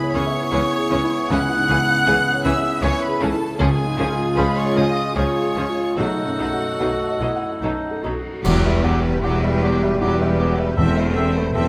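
A reverberant scoring-stage sound frames this emotional, longing cinematic orchestral cue in a rubato 3/4, where a clear solo violin sings the melody until 8.0 s over a clear violin section, rich violins, a hollow flute, a distant cor anglais, a close-miked clarinet, expressive violas, bright cellos, lush double basses, a felt-muted upright piano, mellow French horns and a ringing, very quiet harp, with soft timpani strokes at 3.6 s and 10.8 s, and a cymbal swell, clash cymbals and bass drum from 6.0 s building to an accented shift at 8.4 s.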